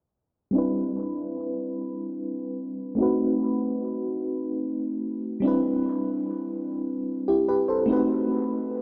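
Sensual and unhurried, this short R&B fragment cut from a longer piece moves at 49 BPM in a straight 6/8, centered in C major and tuned to A4 = 444 Hz. A mellow FM electric piano plays alone from 0.5 to 8.8 seconds, sitting up front in a range from G3 to C5 with a soft, round, warbling, vintage tone and a noise layer beneath its fast-attack, decaying notes. Chorus, tremolo and analog delay color the keys, giving them a dark, dreamy shimmer. The harmony rocks between Cmaj7 and B7b9, with the first phrase running to 5.4 seconds and a second answering section carrying on to the close. A filter sweep moves through the opening phrase, and the whole mix is soaked in a wet cathedral reverb with a long 4.7-second tail and softened by a low-pass filter, leaving a hazy, intimate glow.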